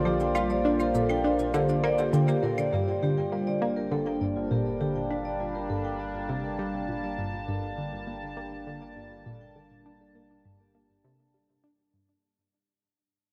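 Expansive and mysterious, this short cut from a longer piece of ambient, sequencer-driven space music moves in a straight 4/4 feel. A sweeping, resonant pad holds evolving, detuned chords up front, treated with chorus and phaser, while a bright, wave-folded analog pluck plays a decaying riff with chorus and delay. A vibraphone struck with medium hard mallets rings out metallic arpeggios with delay, its tone carrying a boxy small-room character, and a deep, dark analog bass sustains beneath. Electronic claves and shaker sit in the background with delay until 2.7 seconds, when the harmony settles from Bb6 onto G minor. From that point the vibraphone, the bass and the whole passage fade out through 12.2 seconds, all bathed in a huge, wet reverb and the warbling pitch drift of worn cassette tape.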